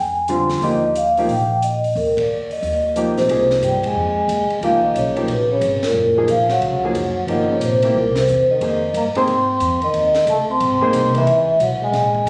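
Small-group swing and bop jazz at a relaxed, sophisticated 180 BPM, where mellow soft-mallet vibraphone carries the melody up front over thumpy gut-string upright bass, clear, slightly worn grand piano comping and a dry cocktail kit with dark cymbals and a high-tuned snare, as a breathy, distant trombone adds a whispered second line from 3.2 s when the harmony moves from Eb major to Ab major, with band accents punctuating a roomy studio reverb captured on a phone.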